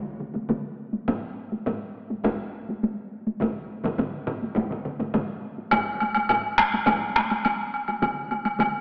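A taiko drum ensemble opens at 0.2 s, struck with heavy sticks and heard close and dry at the front of the sound, in a powerful, ceremonial Japanese traditional style with a straight feel in 4/4. More taiko layers join almost at once: one played with hard sticks in a small room, also up front, another close and weighty, and a fourth set back in a live room in the background. At 5.7 s the piece moves into a new section as a woodblock enters up front, its woody tone compressed and saturated. The whole performance sits in a wet concert hall reverb yet is filtered through a thin AM radio sound, giving the ritual drumming a broadcast quality. The passage is cut from a longer piece; the close, weighty layer drops out at 7.3 s and the background layer at 8.2 s, while the first two taiko layers play on to its close at 8.7 s.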